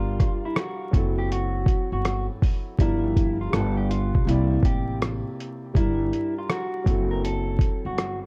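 A compressed, sampler-style drum kit sits up front in this short melancholic, nostalgic lo-fi hip hop cut, entering at 0.2 s with hi-hat, rim click and a thumpy kick that sound pitched down, muffled and re-recorded in a small room. The tempo is an unhurried 81 BPM in 4/4, with a 65% swing on the sixteenths that gives the groove a loose, lazy lean. An acoustic upright bass plays pizzicato on gut strings, its woody, dark tone also placed close to the listener. A warm, intimate upright piano provides accompaniment, smooth and vintage with long sustain, audible action noise and a cassette-tape character. Over it, an electric guitar through a small old amp carries the picked melody with a slightly broken-up, lo-fi edge. The harmony in G dorian moves through Gm7, F#m7b5, G7 and C9, all wrapped in dark, warm digital ambience and vinyl crackle, and the excerpt is cut from a longer piece, ending at 8.3 s.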